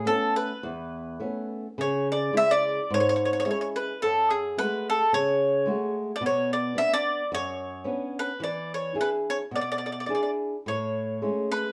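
From the first moment, a mellow, round mandolin with picked double strings carries a wistful, passionate Italian folk melody over fingerpicked flamenco guitar accompaniment, both up front yet softened by a reverberant studio room heard from further back, with a gently swung, rubato feel as the chords drift through minor colours to settle on Amaj7 at 10.7 seconds in this fragment of a longer piece.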